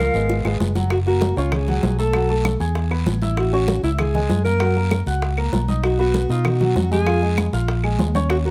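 Afro-Cuban jazz at a brisk 195 BPM in 4/4 with a straight feel, this lively, sophisticated excerpt in F# major is cut from a longer piece and opens with a drum fill before the main section settles in at 0.9 seconds. An alto saxophone carries the melody with a jazz-style vibrato and solo voice, while a breathy, crisp concert flute sounds a single high note for just the first 0.6 seconds. An upright piano with a woody, open tone and long sustain supplies the accompaniment, and a dark, round, amped fingered electric bass sits up front beneath it. The percussion bed blends damped, medium-tuned congas played with hard hands in the background, tight high-tuned bongos played with soft hands, woody claves and a raspy guiro. The chords move through shades such as F#add9, Amaj7, B6 and Fmadd11, and the close, detailed recording carries a light reverb.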